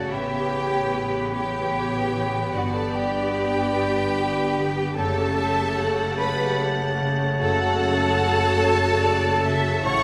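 A bittersweet, sorrowful cinematic passage cut from a longer piece opens at once with a full orchestral texture, moving in a slow, rubato 6/8 at 49 beats per minute in F# phrygian. A distant, rich violin section carries the melody in the background, while a second, clearer violin section sings a lush, vibrato-laden line above it, joined by a dark, present solo clarinet, a roomy solo oboe and, from 0.1 seconds, a pure, soft-attacked flute section. Beneath them, a smooth, even viola section supplies the accompaniment and a tight French horn section holds sustained chords, as a fingerpicked concert harp rings out arpeggios across a broad range. The low end is anchored by a close, focused cello section, the most prominent part in the mix, and an expressive double bass section reaching down to F#1. The harmony drifts from Aadd9 to G and then to F#m, and the whole ensemble sits in a wet scoring-stage reverb with a 1.6-second decay that lends the sound a spacious, mournful glow.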